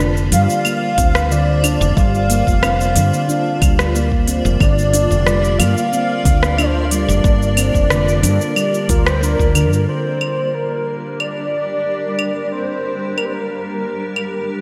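A lush hall reverb gives this organic downtempo piece a big, arena-like space, cut from a longer work with a meditative, earthy mood. A cloudy, evolving granular pad holds sustained chords throughout, with built-in reverb and sidechain pumping, while a ringing handpan struck with the fingertips plays arpeggios through digital delay and slapback echo. Underneath, a woody, round fretless electric bass with a hollow-body tone sits up front and pumps with the sidechain. Crisp hats, cabasa, claves and rim clicks from a tape-toned electronic kit carry the groove, and a deep electronic kick joins at 1.0 s. A breathy, flute-like synth lead with vibrato sings the melody over the top through ensemble chorus, tape echo and slapback echo. By 9.9 s the handpan, bass and kick have fallen away, and the harmony settles from Gm7 to Gm as the pad, kit and lead carry on.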